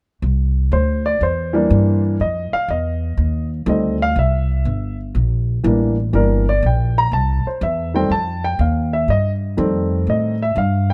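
A woody, plucked upright bass opens at 0.2 s, with a baby grand piano joining at 0.7 s to carry the melody in a plate reverb, both sitting up front in this swinging, playful jazz trio cut from a longer piece. The tempo is a medium 122 BPM in 4/4 with a triplet swing on the eighth notes, moving through C7 and F7 changes, tuned to A4 = 442 Hz. The production is dark and warm with light reverb, and the piano has a warm, present tone.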